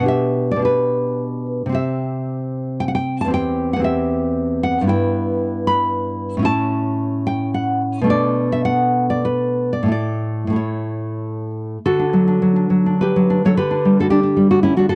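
A full-bodied, fingerpicked nylon-string guitar sits up front in this tender, sunny romantic solo piece, unfolding in a rubato 3/4 through chords such as Em/G, Bm7 and A before settling on D at 11.8 seconds, with finger squeak captured by a dry, close 1970s-style studio sound in this fragment cut from a longer work.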